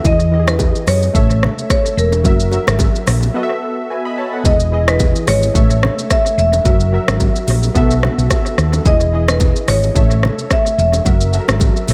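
Afrobeats at 109 BPM in E major, this breezy, sunny clip from a longer piece moves with a lightly swung sixteenth-note feel through a cycle of Emaj7, A, F#7 and B7sus4. A punchy, round hollow-body electric bass sits up front with a dark, amped tone, alongside an electronic drum kit built on a deep kick, metallic hi-hats, rim clicks and shaker, its parts carrying dub echo. Analog keys supply mellow, detuned sawtooth chords with a fast attack, a filter sweep and chorus, while bright acoustic congas and bongos sit distant in a large room in the background. A marimba played with medium mallets carries the melody from 0.1 seconds, its tone warm under dub echo. A brief break arrives at 3.4 seconds, and the whole is bathed in digital ambience for an echo-heavy mix.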